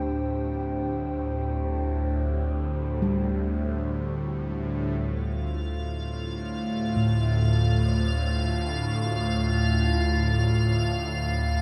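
A dreamy, reverb-soaked mix with a cassette-tape haze opens this dark, ominous ambient piece in free time, where a tense, string-like bowed drone sits up front with phaser and vibrato beneath a deep, moody analog pad of sustained chords, bronze gamelan-type bossed gongs with a beating, metallic ring enter at 3.0 s in the background with delayed arpeggios, and a crystalline, airy glass pad joins at 5.4 s.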